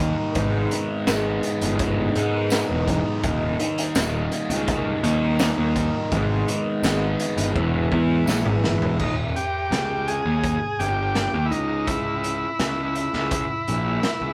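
Psychedelic rock with a dark, hypnotic mood, cut from a longer piece and captured as a rough rehearsal-room recording, where a clean tonewheel organ through a slow rotary speaker holds sustained chords over a double-tracked fuzz guitar riff with phaser, a round, overdriven fuzz bass up front, a gritty, boomy garage drum kit with a pumping room sound and a jingly tambourine in the background, until a drum fill starting at 7.6 seconds leads at 9.0 seconds into a buzzy, overdriven combo organ melody with light vibrato and slapback echo.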